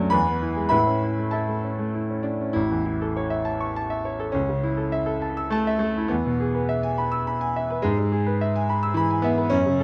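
This classical virtuoso piano study has a sparkling, brilliant mood and moves in a flexible, rubato three-beat metre. A solo grand piano carries the whole 9.8-second excerpt, spanning from A1 up to E6. Its tone is bright and smooth with a vintage character and long sustain, and it sits up front in the mix. Light reverb surrounds the instrument, while the overall production leans dark and warm, and the tuning sits at A4 = 435 Hz. An opening passage gives way at 2.6 seconds to a longer second section, with the harmony moving from E to A, then A/C#, back to E and finally E/G# as the fragment breaks off mid-piece.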